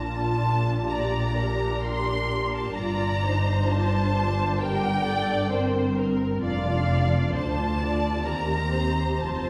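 A slow, rubato pulse at 65 BPM in 4/4 carries this serene, tender romantic movement for string orchestra, cut from a longer piece and tuned to A4 = 439 Hz. The bowed first violins sing the melody up front between F5 and C6, their tone rich, focused and lush with vibrato. Close behind, the viola section supplies a dark, woody accompaniment, while cellos and double basses anchor the bass with a smooth, even sound. A second violin line joins at 0.9 seconds, sitting softly beneath the melody between Bb4 and D5. The harmony moves from Bb through Gm7 and Dm/F to Cm7/Eb, all bathed in a scoring-stage reverb that places the listener further back in the room.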